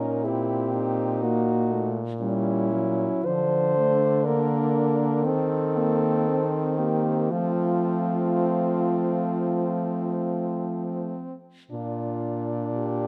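Close, detailed microphones capture this horn quartet inside a moderate recital hall reverb with a 1.4-second decay. The music is a serene, tender classical passage in Bb major and 4/4, moving at a slow 53 to 63 BPM with a freely breathing rubato feel. The top horn carries the melody with a mellow, smooth-topped tone, while a second horn sings a clear inner line touched with light vibrato. Beneath them, a third horn supplies the accompaniment with a soft attack and stops at 11.1 seconds. The bass horn sits up front and close-miked, its tone shaded with vibrato. Cut from a longer piece, the harmony opens on a Bbdim7, passes through Bb/D, Cm/Eb and F, and settles on Bb at 11.7 seconds.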